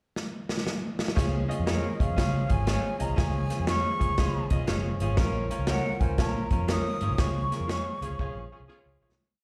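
A punchy, up-front big-band drum kit drives this joyful, uplifting uptempo 1960s-style soul piece at 120 BPM in swung 4/4. Its fill in the pickup bar leads to the entry at 1.2 seconds of a dark, round, foam-muted electric bass, brilliant grand piano chords in eighths and a very quiet, reedy tonewheel organ pad. A breathy, hollow jazz flute then carries call-phrase motifs over slightly broken-up, lo-fi guitar chops on the backbeat. A clear horn section adds punches in the background from 8.0 seconds as the band accents and fades out, the whole performance heard through a club PA with reverb, and slapback echo on the piano, flute, guitar and horns.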